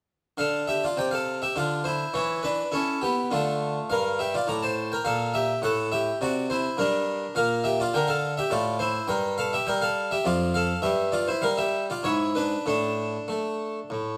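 Classical baroque-style suite movement for solo harpsichord in D minor, solemn and introspective, moving in a flexible, rubato 3/4 at around 103 BPM across this short excerpt cut from a longer piece. The French-style harpsichord sits up front with a plucked, brilliant, full tone from its three sets of strings, spanning F2 to Bb5 as the harmony travels through G minor and diminished colours before closing on E7/G# and an unresolved Asus4 at 12.7 seconds. A moderate stone-room reverb gives the instrument a resonant halo.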